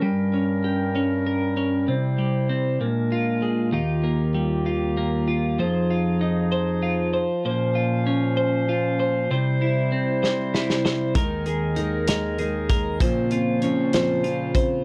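A slow 6/8 sway at 65 BPM carries this aching, dramatic pop ballad excerpt, where a bright, twangy twelve-string electric guitar plays up front over sustained chords from a mellow, smooth-topped woodwind section, moving through harmonies such as Gdim, Ebadd9 and Bbmadd9. A loose indie drum kit, gritty and saturated with a punchy kick and rolled-off top, enters with a fill at 10.2 s, and a full-bodied fingerpicked dreadnought acoustic guitar adds arpeggios from 11.2 s. The sound is a dry, close 1970s-style studio recording touched by light reverb.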